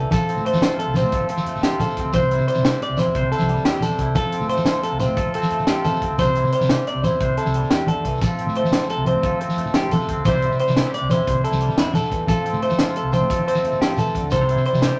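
A picked, clean electric guitar sits up front playing arpeggios over a joyful, sunny highlife groove in F major at 118 BPM in 12/8, while a second twangy electric guitar picks out accompaniment bathed in spring reverb. A tight funk drum kit with a high-tuned snare, damped congas struck with soft hands, and a grainy shekere in the background drive the rhythm alongside a dark, round fretless bass. The chords alternate between F and C throughout this 15-second cut from a longer piece, set in a wet studio reverb.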